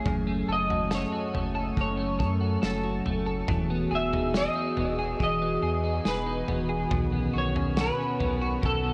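A warbling, detuned pad and a clean, picked electric guitar playing arpeggios through analog chorus and digital delay open this haunting, melancholic dream pop excerpt at 70 BPM in F# dorian, soon joined by a thick, saturated sub bass and a loose, small-room acoustic kit with a tight kick, medium-tuned snare and toms. From 0.5 seconds a second up-front clean guitar carries the melody high above, sharing the same chorus and delay, as the chords move from F#m to Emaj7 at 3.5 seconds and Badd9 at 6.9 seconds. The whole recording sits in light studio reverb with a worn cassette-tape character and a warbly, drifting pitch, while the pad lends a nostalgic, lo-fi haze.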